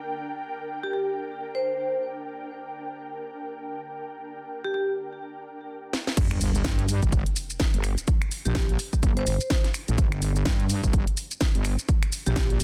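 Bass house at 126 BPM in G minor with a swung, bouncy yet aggressive feel, this cut opens on an ethereal, airy pad with ensemble chorus, tremolo and sidechain pumping over a G minor chord, while a ringing vibraphone carries the melody through delay, before a drum fill at 5.9 s leads into a drop at 6.2 s where an overdriven, punchy kick up front, a garage kit with a cracking snare, finger snaps, hi-hat, shaker and crash, a faint sub drop and a heavy, saturated wobble bass with chorus and pumping take over as the vibraphone returns at 8.5 s, all in a dense, heavily limited mix with light digital ambience.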